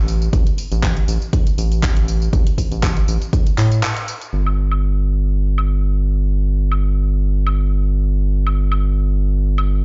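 Booming through a big sound system in a bare, stone-reverberant room with a dark, dulled top end, this moody, smooth deep house cut from a longer piece moves at 120 BPM with a light 16th-note swing, carried by a round, mellow analog bass that pumps to a sidechain, a punchy, up-front electronic kick that drops out at 3.4 s, and a filtered, layered kit of handclaps, hi-hat, tambourine and woodblock, before a brief break with a band accent at 3.8 s leads into the second section.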